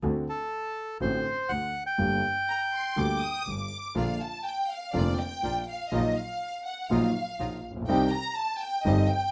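Dramatic and melancholic, this short cut from a longer tango moves at 123 BPM in 4/4 with a rubato feel, opening in G minor before turning to Bb major at 4.0 seconds. A dark, mellow concert grand piano carries the accompaniment up front, its deep bass and audible action noise giving an intimate, vintage character, while a single bowed double bass sits distant and focused beneath it with vibrato. A reedy, close-miked bandoneon sings the melody from 0.3 to 3.4 seconds, dry and full at the front of the mix. An expressive violin section enters at 2.5 seconds with a second line marked by vibrato and portamento, then takes the lead from 4.0 seconds as a boxy-sounding bandoneon adds stabs underneath. The harmony moves from D7 to Gm, then through Bb, Ebmadd9/Bb and Cm, all set in moderate studio reverb.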